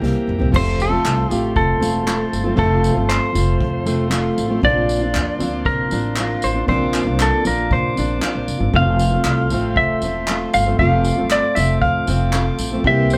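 A straight 4/4 groove opens with a short drum fill from an acoustic kit played with bundle sticks, its dark crash, tight kick, snare, toms, tambourine and handclaps carrying a heartfelt, sunny acoustic pop excerpt. A fingerpicked jumbo steel-string guitar with fresh strings and a full-bodied tone, a woody pizzicato upright bass, a reedy electric piano with fast tremolo and a clear tonewheel organ through a stopped rotary speaker fill out the backing over C7, F and Bbadd9. From 0.6 s, an up-front, compressed, twangy lap steel played with a slide takes the melody, with the whole band sounding live in one room under moderate reverb.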